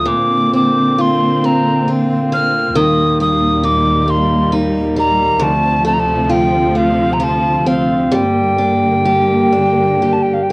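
Haunting and mournful, this Celtic slow air in 3/4 unfolds with a free, rubato feel across its brief 10.5 seconds, cut from a longer piece. An airy wooden whistle carries the melody up front, hollow and mellow with a soft attack and vibrato, over a boxy archtop guitar picked on fresh strings and a focused, bowed studio string section holding sustained chords. The close, dry 1970s-style studio sound sits in a small room reverb as the harmony moves from Bbadd9 through Eb and Dm7 to Gm.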